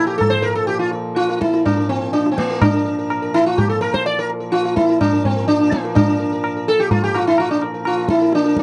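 Set in a seven-beat cycle at 125 BPM with a straight feel, this meditative, radiant Hindustani excerpt in raga yaman on Bb features an up-front sitar carrying the melody with a buzzing, shimmering tone alive with sympathetic strings. Beneath it, a hand-pumped harmonium holds a reedy, breathing drone low in the mix, while the high-tuned, ringing tabla enters at 0.2 seconds. The close, dry 1970s-style studio sound carries light reverb across the 8.6-second fragment cut from a longer piece.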